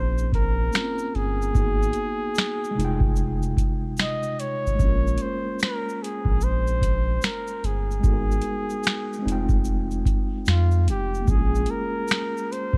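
A mellow flugelhorn with light vibrato carries a jazz-style solo melody over a cassette-toned tine electric piano, a deep, round dub sub bass and a booming analog drum machine of crisp snare, metallic hats, finger snaps and shaker that enters at 0.2 s, giving this dry, tape-warm lo-fi hip hop excerpt a nostalgic, melancholic swing.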